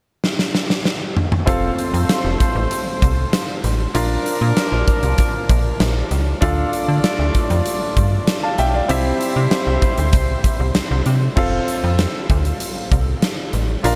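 Nostalgic and uplifting, this excerpt of 1980s-style pop opens with a huge arena drum kit, its bright cymbals, punchy kick and pumping room sound up front, playing a fill from 0.2 seconds. At 1.5 seconds a snappy, metallic FM bass joins up front alongside a clear, polished concert grand piano bathed in shimmer reverb, and a mellow, distant horn section adds tight stabs through diffuse ambient delay until 11.0 seconds. The chords move from F through Bb, Dm and C before returning to F, all within a dreamy mix soaked in a vast ambient reverb.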